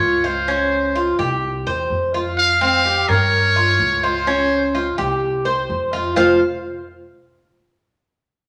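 A wet, large-studio reverb surrounds this nostalgic fragment of Cuban son and guajira, moving at 126 BPM in a straight 4/4. Up front, a metal-muted trumpet carries the melody with a brilliant, buzzy tone, light vibrato and scooped notes in a jazz style, while a Cuban tres picks metallic arpeggios on double strings, some of them octave-doubled. Beneath them, a woody, thumpy pizzicato upright bass on gut strings sits darker and lower in the mix, with all three parts playing from the start until 6.4 s over chords such as Dbmaj7, Csus4 and Gm7b5.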